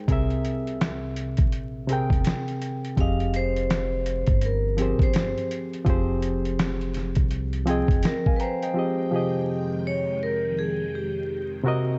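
Melancholic and hazy, this lo-fi hip hop excerpt in F minor moves at 83 BPM with a swung 4/4 feel, opening on a barky, lightly overdriven reed electric piano that sits up front alongside a gritty, compressed sampler-style drum kit with a thumpy kick and fat snare, while a woody pizzicato upright bass holds the low end over C7b13 moving to Fm9. At 3.0 seconds a ringing vibraphone played with hard mallets carries the melody through tape echo. The bass drops out at 8.0 seconds, and when the drums follow at 8.8 seconds a swirling, phased string machine with a slow attack enters beneath the electric piano. The production is dark and filtered, dusted with vinyl crackle and a digital ambience.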